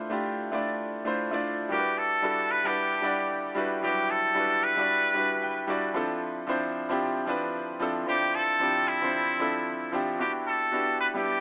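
A swung sixteenth-note groove at 113 BPM in 4/4 drives this soulful, hypnotic amapiano excerpt in E phrygian, cut from a longer piece. A clear concert grand piano opens alone with accompaniment chords on Dm9, its polished tone carrying deep bass and short sustain. At 1.7 seconds the drop arrives and a trumpet with a straight mute takes the melody, nasal and brilliant with vibrato, its pop-style solo coloured by tape echo. The harmony moves between Em9 and Dm9, and the piano slips in a brief fill at 5.2 seconds. Light reverb and a small room ambience frame the parts, while the overall sound has the character of a small speaker.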